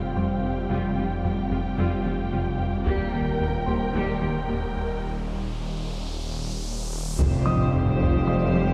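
A distant, wet concert-hall sound, heard from further back in the room, frames this tense, relentless cinematic excerpt of hybrid orchestral and electronic film score at 111 BPM in 4/4. From the start, an ethereal, airy pad with ensemble chorus holds sustained chords over a round analog bass riff and a snarling, distorted saw bass that growls in the low register, while a felt-muted upright piano adds soft, intimate texture through a digital delay in the background. Bowed strings fill out the orchestra: a dark, expressive violin section carries a second line, a smooth viola section accompanies, and very quiet cello and double bass sections reinforce the bass as the harmony moves from Fsus2 to Eb at 2.9 seconds. A taiko ensemble struck with heavy sticks hits briefly, and an electronic riser builds from 4.1 seconds through a break and drum fill. At 7.2 seconds an impact lands on Fsus2 as the taiko returns, a rich violin section takes a melody on C5, and mellow French horn and trombone sections enter with sustained chords.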